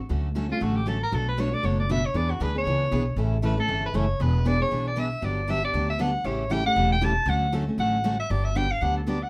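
A soprano saxophone carries the melody in a playful, charming stretch of acoustic string swing in the jazz manouche style. It enters at 0.5 seconds and solos through to the end, its jazz phrasing coloured by light vibrato and scooped notes, with a roomy, distant quality even as it sits up front. Beneath it, two warm, picked steel-string acoustic guitars play accompaniment from 0.1 seconds: one a dreadnought, the other a parlour guitar with fresh strings. A pizzicato upright bass anchors the low end with a woody, up-front tone. The swung chords move from Dmaj7 through Bm7, E7 and A to a closing Gmaj7, and a moderate studio reverb gives the group a sense of space in this short cut from a longer piece.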